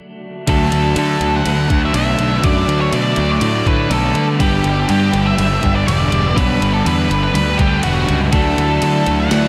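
From 0.5 s, a dreamy, blissful shoegaze and dream pop passage in D major at 122 BPM features a dark octave-fuzz lead guitar carrying the melody up front through tape echo. A punchy, overdriven fuzz bass sits forward too, over a gritty, pitched-down boom bap sampler-style kit with a thumpy kick, high-tuned snare and ride. Further back, a thick fuzz guitar with analog chorus and an overdriven semi-hollow guitar with reverse reverb play riffs over D and G6 chords, and a warbling, nostalgic tape-like pad slips in at 8.7 s on Dadd9, all bathed in a huge ambient reverb in this fragment of a longer piece.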